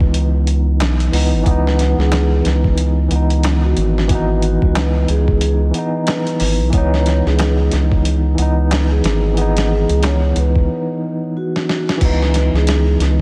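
A round, deep analog bass sits up front, its square and sine tones wave-folded and thickened by tube saturation, anchoring this dark, cinematic trip hop passage cut from a longer piece. Beside it, a clean tine electric piano carries the accompaniment with tremolo, tape echo and a layer of vintage 12-bit sampler grit. A dusty soul sampler-style kit swings underneath, compressed and gritty, with a thumpy kick, medium-tuned snare, hi-hat and crash set in studio ambience. A crisp, metal-shelled darbuka joins in the background at 0.8 seconds, and from 1.5 seconds a mellow soft-mallet vibraphone adds a ringing, metallic melody trailed by dub echo. A break arrives at 10.7 seconds and is capped by a drum fill, all held within a dreamy mix steeped in lush hall reverb.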